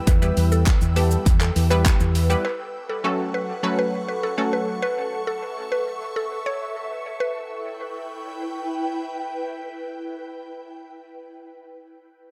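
A round, dark fingered electric bass and a punchy pop drum kit of kick, hi-hat, handclaps and shaker drive this bittersweet dance-pop clip until about 2.4 s, while a bright detuned chord stab with dub echo, a woody FM mallet-like pluck carrying the melody, and an ethereal, airy pad with phaser and ensemble chorus float on, the stab, pluck, pad and bass pumping to the sidechain in an echo-heavy mix.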